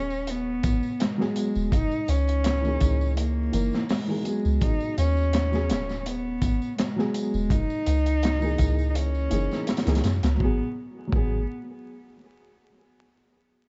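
Brooding, smoky trip hop, cut from a longer piece, where a close, bowed cello with vibrato and tape echo carries the melody over a deep, round 808-style bass. A gritty, saturated breakbeat kit with a high-tuned snare and tight kick enters at 0.3 seconds, a ringing tambourine sits in the background, and a boxy, felt-muted upright piano with tremolo and tape echo joins at 1.2 seconds, all wrapped in a shadowy small-room mix dusted with vinyl crackle.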